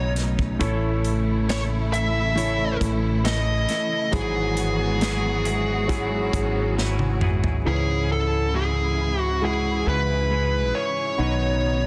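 A longing, melancholic pop ballad excerpt in which an up-front, dark, distorted lead guitar carries the melody over long-sustaining grand piano, bowed strings with vibrato and portamento in the background, a bright, twangy twelve-string electric guitar picking arpeggios through harmonic tremolo, and a round, mellow fretless bass, while an airy country drum kit with a punchy kick plays from 0.2 seconds, plays a drum fill at 6.8 seconds and stops at 7.6 seconds, all set in a small room with light reverb and a dense, heavily limited master.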